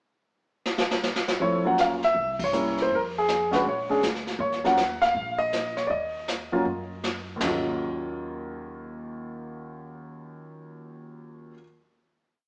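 The recording has a live-in-one-room feel, bathed in a wet stone-room reverb and heard as if through a small speaker. It is a moody, late-night jazz piano trio piece in Eb minor, swinging at 160 BPM in 4/4. A brushed drum fill arrives partway through the pickup bar at 0.7 seconds, the kit sounding distant and roomy, with dark cymbals, a boomy kick and a rolled-off top, and brushes sweeping on the snare. Across hi-hat, ride, china, toms and snare, the kit stays up front. At 1.4 seconds the intimate concert grand piano and the woody, thumpy pizzicato upright bass come in together. The piano, with audible action noise and deep lows, states short call phrases built on a motif and adds syncopated comping in rootless voicings, while the steel-strung bass plays a two-feel underneath. Moving through Ebm9, C7b9, Fm and Bb7#9 to Ebm with a band accent along the way, the trio settles onto a final Ebm9 chord at 7.4 seconds that rings out to close.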